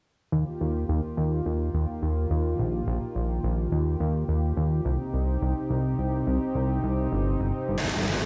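A straight 4/4 pulse at 106 BPM carries this dreamy, nostalgic synthwave piece in Eb major, where a thick, detuned sawtooth bass with tube saturation, a fast attack and an evolving filter sweep sits up front beneath a smooth, soft-attack pad of sustained, chorused chords that moves from Ebadd9 to Cm at 4.9 seconds, the two parts framed by light small-room reverb.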